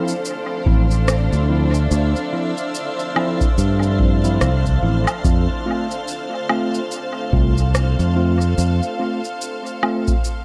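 Ambient dub in D minor at 72 BPM with a swung 16th-note feel, this hazy, spacious excerpt moves from Dm7 to F beneath a bright, blurred granular cloud pad with a slow attack and long release, while mellow, clean tine electric piano stabs drift through dub echo. A tape-warm electronic shaker, rim click and woodblock also carry dub echo, and from 0.7 seconds a dry, deep electronic kick and a dark, round fingered electric bass sit up front, the bass dropping out at 8.8 seconds. Light digital ambience surrounds the whole mix.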